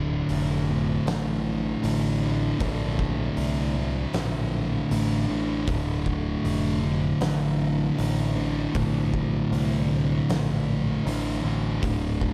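Brooding and sludgy, this stoner and doom metal excerpt crawls at 78 BPM in 4/4 on a D5 power chord, with two thick fuzz guitars grinding out the riff, one dark and set back, the other up front, over a bright, punchy picked electric bass with overdrive and an oversized low-tuned acoustic drum kit that enters at 0.3 seconds with a fat snare, punchy kick and hi-hat in a gritty, pumping big room, all within a dark production touched by light reverb and studio ambience.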